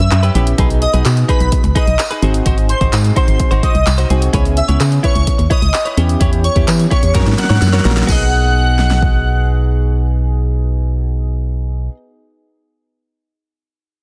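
An organ-like FM bass stands up front in this carefree, upbeat dance-pop excerpt at 128 BPM in B major, its hollow, dark tone pumping from the sidechain under a tape-warm deep house drum kit with a deep kick, fat snare, handclaps, hi-hat and crash cymbal. The passage opens on a drop that runs to 8.1 s, where a drum fill hands over to a new section, and the drums stop at 9.1 s. An airy, dreamy lead carries the melody with detuned unison layers, a noise layer, chorus and digital delay. Beneath it, round, gentle electric-piano-like synth keys pump in the accompaniment with a filter sweep, while a clean, direct-recorded electric guitar plays a compressed riff with subtle chorus. A jingly, vintage tambourine sits in the background as the harmony moves through Em6, B6, G#7, C#m7 and F#, all framed by light reverb and a dense, heavily limited modern master.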